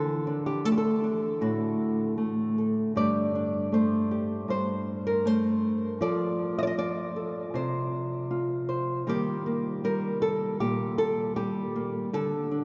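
In a straight 4/4 at 78 BPM, this intimate, melancholic folk piece in G minor features a solo nylon-string guitar, fingerpicked with a dark, small, up-front tone and audible finger squeak. It moves through D, Gsus2, F and Eb before landing on D5 at 12.1 seconds. The guitar sits in a wet cathedral-like reverb with a 5.6-second decay, and the passage is cut from a longer piece.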